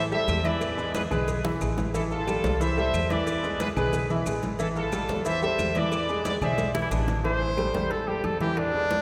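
Fiery and danceable, this salsa excerpt in A minor moves at a brisk 181 BPM in straight 4/4, alternating between Am7 and E7 under a cathedral-sized reverb that gives the whole cut a church or concert-hall bloom. A bright, tight trumpet section leads the melody up front with light vibrato and a vintage punch, while a clear, present grand piano carries the accompaniment and a dark, thumpy upright bass with gut strings plucks the low end. Underneath, the percussion sits in layers: warm, thick-skinned congas damped in the background, grainy close maracas, woody claves heard in a live room, and a very quiet pairing of high-tuned cowbell and bongos struck with hard hands. Drum fills punctuate the groove, and near 6.7 seconds a very quiet baritone saxophone slips in briefly with its own vibrato as the trumpet section drops away. At 7.2 seconds a single trumpet steps forward for a punchy, roomy solo that carries the passage to its close.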